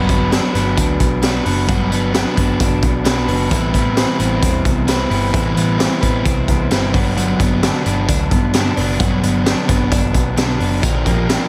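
Breezy and nostalgic, this short excerpt of jangly indie pop sets an up-front, crunchy overdriven guitar and a clean, twangy twelve-string electric playing arpeggios in the background, both bathed in plate reverb, over a dark, round, foam-muted picked bass. A raw garage drum kit of hi-hat, punchy kick and high-tuned snare sits up front with a gritty, saturated character, a rolled-off top and gated reverb. The chords move from Gmaj7 to Am9 and back, turning to Bb6 at 10.8 seconds.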